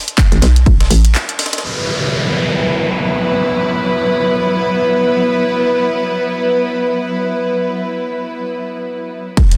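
Bass house in free time, gritty and swaggering, opening with a punchy, tape-warm electronic kick, house handclaps and hi-hat, a pitched-up breakbeat kit with a ride and a high-tuned snare, and a hollow, bouncy FM bass with overdrive and sidechain pumping, before a break at 1.1 seconds. From 1.6 seconds a dark, intimate chamber string section holds Esus2 chords with light vibrato, a smooth top and sidechain pumping, while an electronic downlifter runs alongside until 5.5 seconds. Drums and bass return with an impact at 9.4 seconds, the mix sitting in a lush hall reverb within a dense, heavily limited master.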